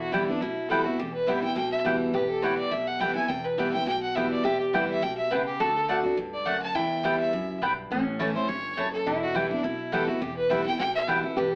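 Bluegrass in E dorian at a driving 208 BPM with a light swing, this rustic excerpt cut from a longer piece puts a clear, biting fiddle up front on the melody with light vibrato and an airy bow, while a nasal, metallic lap resonator guitar played with fingerpicks and slide adds a second line, a full-bodied picked dreadnought with fresh strings and audible finger squeak carries the accompaniment, a double-strung mandolin punches out woody stabs, and a thumpy, dark upright bass sits in the background, all wrapped in wet studio reverb and an AM radio sound over chords moving from Em through D and A.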